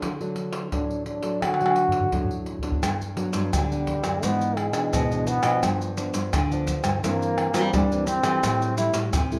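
A moderate large-studio reverb lends a spacious sound to this short, festive cut from a longer samba and choro piece, set at 86 BPM in a straight 4/4 in G major. A fingerpicked nylon-string guitar plays classical-style accompaniment throughout, while a tight surdo, pandeiro, tamborim and maracas sit up front with hard hands and a live-room feel, adding a drum fill from 1.4 seconds. A clear trombone carries the melody from 0.7 seconds, its jazz-style vibrato sounding distant and roomy. It then takes a solo from 2.8 seconds over chords moving from Gmaj7 through E7/G#, G7 and C7/G to Am7. At that same point a second nylon-string guitar enters on the bass line, thumb-plucked with audible finger squeak, and the mood stays playful to the end.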